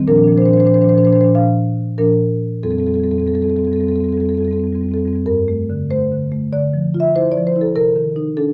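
A dark production sets a solo marimba up front in a moderate stone-room reverb, its padauk bars struck with soft mallets for a woody, mellow, round tone with a slightly boxy character. This contemporary classical piece is reflective and hypnotic, a short cut from a longer work in 4/4 that breathes with rubato and uneven beats. The marimba carries everything alone, ranging from F2 up to F5, and is tuned slightly below standard pitch at A4 = 435 Hz. The opening passage moves through Bbadd9 and Fadd9 harmonies. At 5.3 seconds a new section begins, turning through Gmadd9, Dmadd9 and Cm9 until the close at 8.5 seconds.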